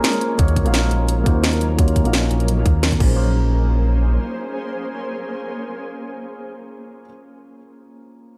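Soulful and melancholic, this short cut from a longer liquid drum and bass piece moves at 172 BPM in Bb minor, with a light swing on the sixteenths. A dark, mellow grand piano plays accompaniment throughout, its intimate tone carrying audible action noise and long sustain, softened by a low-pass filter and tape echo. Beneath it, a shimmering, ethereal pad holds sustained chords with an octave-up shimmer and granular texture, treated with chorus, built-in reverb and sidechain pumping until about 6.7 seconds. From the very start, the overdriven kit lays down a cracking snare, bright hats and crash cymbal in a small room. At 0.4 seconds a tight, overdriven electronic kick and an up-front synth bass arrive, the bass smooth and detuned with portamento, vibrato and a moving notch as it glides under an Ebm9 chord that turns to Bbm9 near 3.0 seconds. The drums stop at 3.1 seconds, and the bass carries on until about 4.2 seconds before piano and pad remain in an echo-heavy mix with light digital ambience.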